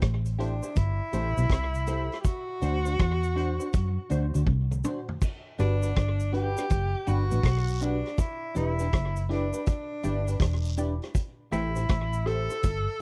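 A clear, distant tenor saxophone with tape echo carries the melody over a punchy, foam-muted vintage bass, a gritty drum kit with dark cymbals and a fill from 4.5 to 5.2 seconds, a slightly broken-up guitar with chorus, a very quiet mellow guitar riff, phased dub chord stabs in the background, and faint cabasa and guiro in this sunny roots reggae excerpt from a dry, close 1970s-style studio, moving from Am7 and D7 to Gmaj7, Em7 and back to Am7.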